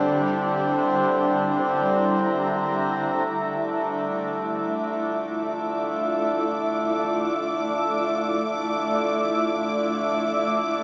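Serene and spacious, this free-time ambient fragment sets a blurred, detuned granular cloud pad and a reedy, breathing hand-pumped harmonium drone up front through its full 10.8 seconds, while a felt-muted upright piano's arpeggios, soft and barely audible with audible action noise, stop at 3.6 seconds, and a lush bowed violin section fades in from 3.2 seconds high above as a filter sweep moves across the pad, all bathed in huge reverb through a small speaker sound.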